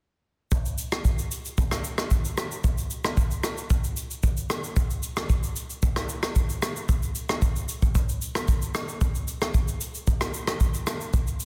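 A straight 4/4 amapiano groove at 113 BPM runs from 0.5 to 11.4 seconds on a soft brush drum kit alone: tight kick, rim click and shaker, with soft clipping grit on the snare. The acoustic kit sits up front in a natural studio room with little reverb, and a dense, heavily limited modern master gives this short cut from a longer piece a deep, soulful feel.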